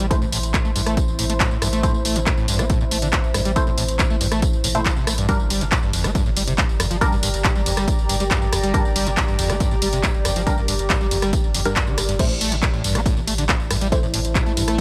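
Intense and industrial, this cut from a longer peak-time techno piece drives at 139 BPM in A phrygian, with a punchy, tape-warm electronic kick and analog drum machine of claps, hats, ride, rim clicks, tambourine and crashes pounding under a screaming, squelchy acid line soaked in distortion, chorus and dub echo, while a round sine sub bass, a moody detuned ambient pad and muted phaser-washed dub chord stabs all pump with the sidechain as the harmony moves from Am to Gm at 5.3 seconds and back to Am at 12.2 seconds.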